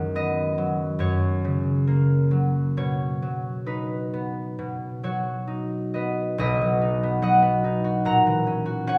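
A warm, ringing concert harp, fingerpicked and up front, plays a gentle, wistful classical solo in B major at a freely rubato 65-74 BPM in 4/4, spanning B1 to A#5 over B and F# harmonies before turning to F#7/A# at 8.1 seconds, all bathed in a wet recital hall reverb in this short cut from a longer piece.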